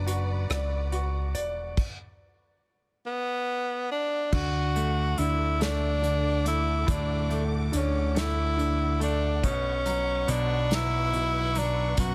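A swaying, tender six-eight pop ballad built on a brilliant concert grand piano with short sustain and deep bass, a round, punchy fingered electric bass, and an acoustic small-room drum kit played with bundle sticks, its crash, hi-hat, tight kick, rim click and medium-tuned snare sitting up front. During a stop from 1.8 to 4.3 seconds, a clear tenor saxophone enters at 3.1 seconds with a pop-style solo melody and vibrato, while a lush, bowed symphonic string section holds distant, expressive chords in the background. Studio reverb surrounds the ensemble as the harmony moves from Bm to D and on to Bsus2.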